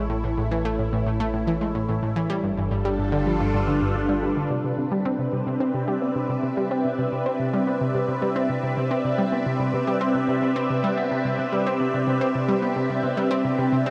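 Ambient, sequencer-driven space music with a cosmic, luminous mood, heard in a short cut from a longer piece. An up-front analog pluck carries the riff in a low register, its detuned sawtooth tone round and bright, with a fast attack that decays through chorus and tape echo. Beside it, a lush unison pad holds sustained chords, thick with a sub octave and detuned sawtooth and square layers, blooming slowly and lingering on a long release under chorus and phaser. Beneath both, a deep, mellow sine sub bass sits lower in the mix and drops out at 4.5 s. The harmony moves from A to G7 at 2.3 s, then resolves at 4.5 s to a Cmaj7 that carries on until 13.9 s. A generous plate reverb bathes the whole in a dark, warm atmosphere.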